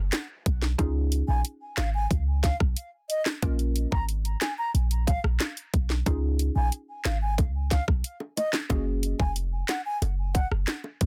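A bright, airy baroque flute carries the melody through digital delay over a bouncy, hypnotic dancehall groove, while a deep, boomy 808-style bass and a tight electronic island pop kit of sharp snare, dark hats, rim clicks and handclaps sit up front. A very quiet downlifter opens the cut, and a woody, warbling FM synth pluck with chorus supplies mellow, mallet-like accompaniment from 0.8 seconds. High-tuned acoustic bongos, close and dry under soft hands, join at 6.1 seconds in this dense, heavily limited, nearly reverb-free modern mix.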